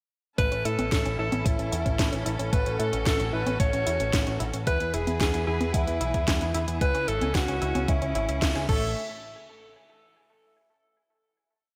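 A four-on-the-floor electronic kick and an overdriven house kit with cracking snare, bright hats, congas and crash drive this short, romantic and playful italo disco piece at 112 BPM in A major, where a breathy alto saxophone with tape echo sings motif-based phrases over sustained symphonic strings, a chorused analog pluck arpeggio and a round, punchy sequenced sixteenth-note bass with an envelope filter, moving through A, E and C#m before a band accent at 8.4 seconds and a final hit from 9.0 seconds.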